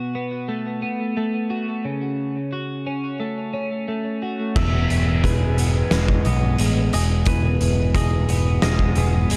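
A clean, compressed twelve-string electric guitar opens this soaring, cinematic post-rock excerpt in E major at 88 BPM, playing arpeggios over B5 and A6/C# chords through analog chorus and digital delay, until at 4.6 seconds a twangy, fingered electric guitar adds higher arpeggios through its own delay, a punchy picked bass enters up front, and an oversized low-tuned drum kit arrives with a boomy kick, fat snare, dark cymbals and a gritty, saturated, pumping big-room sound as the harmony settles on Emaj7, within a dark, warm production and small room ambience.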